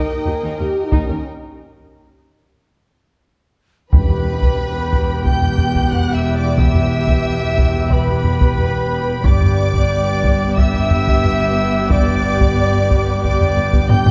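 Relentless and dark, this epic orchestral film-score cut moves at 90 BPM in a straight 4/4, with close, dry taiko drums struck with heavy sticks driving hardest in the mix, joined at 0.9 seconds and filling into the shift to E minor at 3.9 seconds. A distant, lush violin section carries the melody over a second violin line, vibrato-laden violas, sustained chords from dark French horns and a smooth-topped woodwind section, while bowed cellos and double basses hold a rich bass underneath. At 3.9 seconds an airy, hollow flute adds a second line, tight vintage-toned trumpet stabs cut in, and soft-mallet timpani sound briefly, all wrapped in a moderate scoring-stage reverb.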